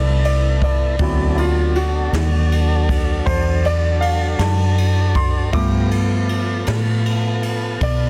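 Slow blues in 12/8 at 53 BPM, soulful and laid-back, where a clear, intimate grand piano takes the lead with audible action noise over smooth tonewheel organ chords turning through a slow rotary speaker, a dark, round, foam-muted electric bass sitting up front, and a brushed jazz kit with boomy kick and dark cymbals, all moving from G13 to D13 and back in a dry, dense, heavily limited mix.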